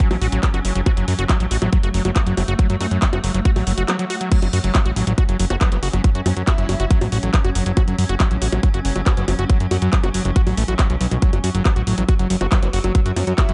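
A tight, up-front electronic kick drives this hypnotic, intense psychedelic trance cut at 139 BPM in F# minor, joined from the start by a garage kit of bongos, handclaps, hi-hat and crash, a squelchy, gritty acid bass riff with distortion, delay and sidechain pumping, and a swarming, tense drone of detuned sustained chords with its own reverb sitting in the background. A fat, thick analog bass enters at 0.1 s with an evolving filter sweep, and a very quiet electronic swell arrives at 3.7 s, just before the kick drops out briefly. Between 5.6 and 9.2 s, and again from 12.5 s, a wobbling formant-sweep bass with chorus and delay adds a second line in the background, all within a dark, dry production.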